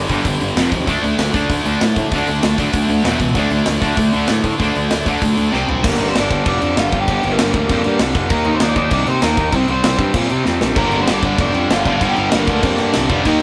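Two bright, double-tracked guitar riffs, one distorted and one overdriven and up front, open this urgent, aggressive punk rock excerpt in G minor at 194 BPM alongside a round, fuzzy picked bass and a big acoustic drum kit with a punchy kick and medium-tuned snare; the overdriven guitar drops out as a warm, compressed lead melody guitar enters at 5.8 seconds after a drum fill, then returns at 10.8 seconds, all captured in a rough rehearsal-room recording with moderate small-room ambience.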